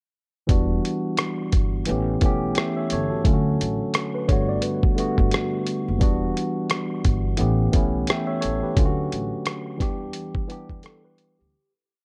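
With little reverb, this short lo-fi hip hop piece at 87 BPM in E dorian feels nostalgic and reflective, built on an up-front, compressed, muffled sampler-style drum kit playing a slumped, off-grid swung beat of thumpy kick, hi-hat and rim click; a woody, growly pizzicato upright bass with a sparse line and slides; and a clean, cassette-tinged, low-pass-filtered tine electric piano that pushes drop2 chords from Em9 through A9 and Dmaj7 in a sampled-sounding loop with grace notes and short fills, while a mellow second electric piano, heard through built-in speakers with analog delay, slips in at 4.1 s for background fills before the piece fades out from 8.8 s.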